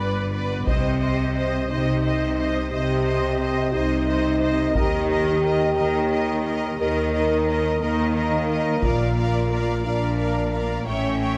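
A slow, straight 6/8 pulse at 59 BPM carries this triumphant, majestic cinematic orchestral cue, cut from a longer piece, where a focused chamber violin section sings the melody with vibrato over a soft-edged, lush symphonic violin second line, distant, even violas, and rich cellos and double basses anchoring the bass with the basses sitting up front, while a mellow, vintage-toned French horn section holds sustained chords from 0.3 s and hard-stick taiko drums play from 0.7 s to 10.1 s, all moving from G through Cm, Eb and Bb to a closing A7 in a moderate scoring stage reverb.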